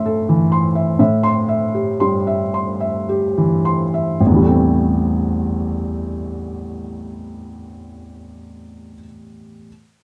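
A soft, mellow felt-muted upright piano plays alone and up front, spanning A1 to C6 in this intimate, wistful neoclassical minimalist fragment cut from a longer piece, moving rubato in 6/8 at a slow 34-44 BPM in A minor (tuned to A4 = 439 Hz), slowing over the opening 4.2 seconds as the harmony shifts from Am to Am7, all heard in a modest small-room ambience with the rough, natural feel of a home demo.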